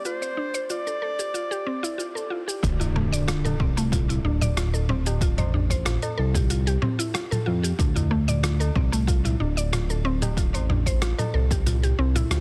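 A straight, unhurried 4/4 pulse at 93 BPM carries this mystical organic downtempo passage in D minor, which opens with a soft-attack classical clarinet singing a brief solo line over woody, detuned synth-pluck arpeggios drenched in chorus, tape echo and shimmer reverb under a filter sweep, all while a gritty, compressed sampler-style kit ticks hi-hat, rim click, shaker and toms. At 2.6 s an electronic impact hits, a punchy layered kick enters and a smooth, saturated sawtooth-and-square bass with vibrato moves up front beneath a Dmadd9 chord, and at 2.8 s close, dry, high-tuned tabla join in, all set in a digital ambience with a dense, heavily limited modern master.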